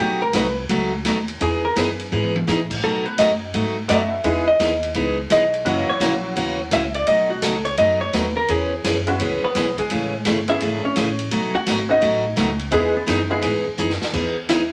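A cheerful, swinging slice of western swing country, moving at a brisk 170 BPM in E major with a lilting swung feel. A vintage hollow-body jazz guitar carries the melody as a solo throughout, its clean, dark, compressed tone sitting up front, while a bright steel-string acoustic guitar picks out the accompaniment with fresh strings and audible finger squeak. Beneath them, a woody, growly upright bass is plucked with a thumpy weight, and a big-band drum kit swings on ride, hi-hat, punchy kick and a medium-tuned snare, dropping short fills around 2.1 and 13.8 seconds. A jangly, detuned honky-tonk upright piano with short sustain joins at 3.9 seconds and returns later, adding vintage sparkle. The harmony moves through rich dominant and major-seventh colours such as B9, Emaj7 and F#7, all set in a wet studio reverb.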